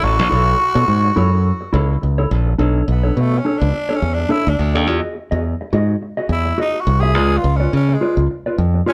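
This glamorous, joyful disco passage, cut from a longer piece, opens with a raspy, growling tenor saxophone carrying the melody over a dark, clean, compressed electric guitar and a bright, punchy fingered electric bass that sits up front, all moving at 105 BPM with a light swing on the sixteenths. From 2.6 seconds the saxophone takes a gritty, pop-style solo with light vibrato as the harmony, having opened on B9sus4, moves through Bm9 and Emaj9 to C#7b9. The band sounds as if it is playing live together in one room, wrapped in a moderate studio reverb.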